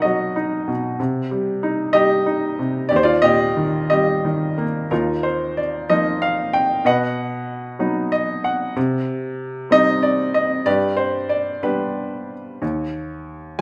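Set in 6/8 at 62 dotted-quarter beats per minute and played with free, rubato timing, this is a short, tender and calm excerpt of lyrical classical solo piano in Eb major, cut from a longer piece. A single upright piano carries the whole performance from 0.0 to 13.6 seconds, ranging from Eb2 up to G5. Its tone is clear, intimate and woody, with short sustain, audible action noise and an up-front, natural presence. The harmony moves through B, Cm and Eb, and a second section begins at 4.9 seconds, where the piano adds a brief fill from 7.8 seconds before the chords pass through Cm and G and settle on an unharmonized close. A moderate recital hall reverb gives the instrument a gentle sense of space.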